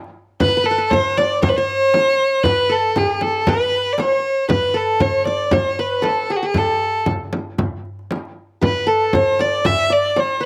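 A rich, smooth violin, bowed by a single player with vibrato and sitting up front, carries the melody in this festive, stately Arabic maqam ensemble piece at 117 BPM in a straight 4/4, cut from a longer performance. Beneath it, a bright-edged qanun played with fingerpicks adds a second line with a slapback echo, while a crisp, deep metal-shelled darbuka opens alone at 0.0 seconds and a large, close and dry frame drum joins at 0.4 seconds, both struck with hard hands. The outdoor recording carries little reverb, leaving the ensemble sounding direct and unadorned.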